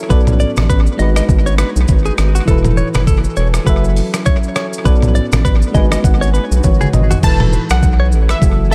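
A round, deep analog bass sits up front with a gritty, compressed sampler-style drum kit of thumpy kick, rim click, finger snaps, shaker, hi-hat, toms and crash, driving this mellow, sultry afrobeats excerpt at 101 BPM with a swung sixteenth feel and tape echo on the drums. A decaying FM electric piano comps through chords such as Bm7, G#m7 and Esus4, a clean, direct-recorded electric guitar picks a riff through harmonic tremolo and tape echo, and a glassy, ethereal FM pad holds sustained chords in the background. After a piano fill and a drum fill, a bright, detuned analog pluck melody with chorus and a filter sweep enters at 7.2 seconds in a dry but echo-heavy mix.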